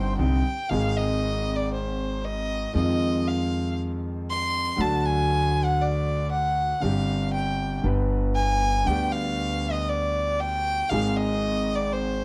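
Violin, piano and upright bass begin together in this sultry, melancholic tango excerpt at 118 BPM with a rubato feel, and from 0.7 seconds the rich, bowed violin takes a smooth solo with vibrato up front while the intimate grand piano, its action noise audible and its notes sustaining long, and the woody pizzicato bass support it through a Cmadd9 opening, Ab, Fm7, D and Gsus4 to G before returning to Ab, all set in a dark production with light reverb.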